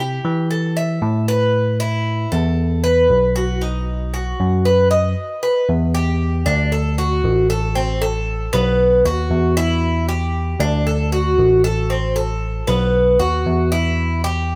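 A Cuban tres and a bell-like tine electric piano open this sultry son and guajira fragment together at 116 BPM in E minor, the tres's metallic double strings picking arpeggios up front while the electric piano carries the bass line beneath it. After an opening passage on rootless and suspended chords that lands on B, a second section arrives at 5.7 seconds and cycles through Em, D, Amadd9 and B. Light reverb gives the up-front pair a little air before the clip cuts off at 14.6 seconds.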